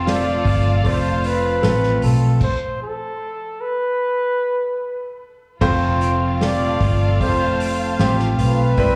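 Pop ballad at 76 BPM in 4/4, hopeful and heartfelt, led by a breathy, intimate flugelhorn melody with vibrato and scooped notes, which enters at 0.1 s together with an acoustic drum kit with a punchy kick, played with bundle sticks, over a polished grand piano and a dark, round, foam-muted electric bass. Further back sit a bright, twangy twelve-string electric guitar picking arpeggios through ensemble chorus and digital delay, a shimmering retro pulse-width pad holding sustained chords, and a lush, distant violin section bowing a second line with portamento. After an F chord, the band stops from 2.4 to 5.6 s before F returns; the flugelhorn, piano, guitar and violins carry slapback echo, and the whole is heard as a live gig through the venue's PA with club reverb.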